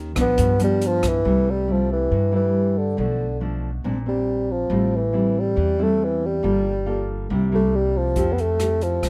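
Thumb-plucked nylon-string guitar with fresh strings and a woody pizzicato upright bass open this romantic, sophisticated bossa nova in C major at 139 BPM. A dark bassoon with classical vibrato takes the up-front solo melody from 0.2 seconds over chords such as G7, C6, Bm7b5 and Fmaj9, while an airy jazz kit with a boomy kick, hi-hat and rim clicks appears briefly at the start and again from 8.2 seconds, all captured with close, detailed microphones and light reverb.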